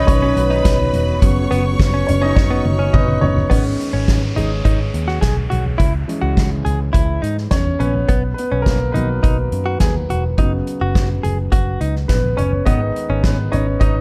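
A concert grand piano leads this bittersweet, earnest piano-driven pop passage, cut from a longer piece, its intimate tone carrying deep bass, long sustain and audible action noise as it takes solo turns across the full 14 seconds. Set at 105 BPM in a straight 4/4 in G# minor, the harmony moves from B and F#sus4 into G#m and C#m before cycling back. A clean, compressed electric guitar recorded direct picks a riff throughout, while a foam-muted vintage bass sits round and dark underneath. A soft-mallet drum kit with a punchy kick and medium-tuned snare sounds distant and roomy yet up front, rolling a fill from 2.4 to 3.5 seconds. In the opening 3.5 seconds a bowed, earthy violin section adds a second line with light vibrato, and a piping tonewheel organ with key click and fast rotary speaker holds chords in the background, before an electronic downlifter sweeps through from 3.5 to 8.1 seconds under a dark production with light reverb and small room ambience.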